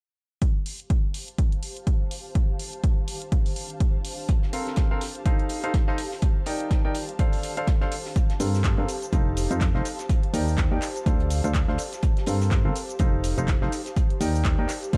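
Piano house at 124 BPM in G minor, energetic and bittersweet, cut from a longer piece, opens with a dry, punchy analog kick up front and a drum machine's handclaps, hi-hat and shaker under studio reverb, adds an ethereal, airy pad with chorus, tremolo and sidechain pumping in the background, brings in a background, cloth-damped acoustic kit with a fat snare at 4.3 seconds and a clear baby grand piano riff through a low-pass filter and tape echo at 4.5 seconds, and lands a round, mellow FM bass at 8.4 seconds over a cycling Gm11, F7, Ebmaj7 and Dm7 progression in a dark, small-room production.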